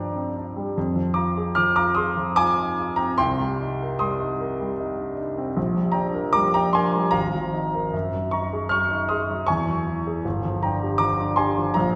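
Impressionist classical solo piano in C minor, drifting at 76 BPM in a rubato 3/4 with uneven beats, this nocturnal, mysterious 12-second fragment of a longer piece places a present, up-front grand piano with long sustain across a span from G1 to F6, its chords wandering from Gm7 through Fm6, Cm7, Bb6, Absus2, F#69 and E69 before returning to Gm7, all set in the wet bloom of a recital hall whose reverb lingers around 1.5 seconds.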